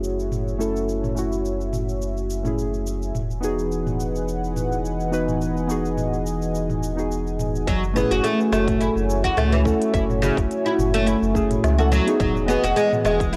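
Organic downtempo at 106 BPM in F# dorian with a lightly swung sixteenth feel, this meditative excerpt sets soft, dark, felt-like synth keys with chorus and analog delay over a smooth analog pad and a round, up-front sub bass, all three pumping with sidechain, while an overdriven organic electronic kit of woody snare, crisp hats, shaker and toms sits beneath throughout, joined at 7.7 s by a bright, plectrum-plucked oud playing arpeggios and a tight electronic kick, the whole piece carried in a gritty cassette-tape hardware sound with light reverb.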